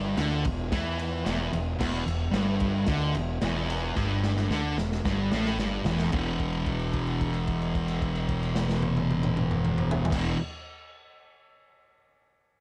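A swaggering, raw garage rock clip in straight 4/4, built on a double-tracked, compressed fuzz guitar riff sitting up front, with an overdriven fingered electric bass underneath and an acoustic breakbeat kit that sounds gritty and saturated, with dark cymbals, a tight kick and a rolled-off top. Over an Em7 harmony the drums play a fill from 4.0 to 6.1 seconds, after which the music shifts to an E5 with a held note ringing until 10.1 seconds. A moderate studio reverb gives the band a modest sense of room.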